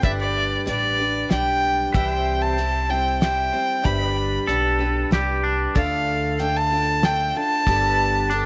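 A rich, focused fiddle with light vibrato and tape echo carries the melody of this sunny, nostalgic honky-tonk waltz at 94 BPM in 3/4, over a bright, picked dreadnought acoustic guitar with finger squeak, a woody, growly pizzicato upright bass, a dry, damped 70s drum kit with a fat snare, and a pedal steel guitar with lush chorus swelling in the background, moving through G and C before a clean, twangy electric guitar with tape echo adds an up-front second line at 4.5 s as the chords shift to Dm and Gadd9, all set in a small room with light reverb in this short cut from a longer classic country piece.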